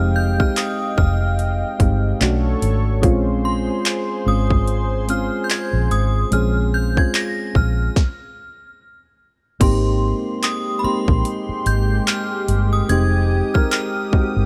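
Ringing, inharmonic FM synth chimes carry the melody over soft electric-piano-like synth keys, a warm detuned sawtooth pad and a dark, foam-muted vintage electric bass that sits up front, with a trap kit of hard-clipped kick, sharp snare, metallic hi-hats, handclaps and crash entering at 0.4 s. This sensual, longing contemporary R&B excerpt moves at 73 BPM in 4/4 with a swung 16th-note feel, its chords shifting from Fm9 through Bm9 and Bbm9. A stop at 8.0 s leads into a new section at 9.6 s that settles on Abmaj7 before returning to Fm9, all under light reverb and with the overdriven drums re-recorded in a small room.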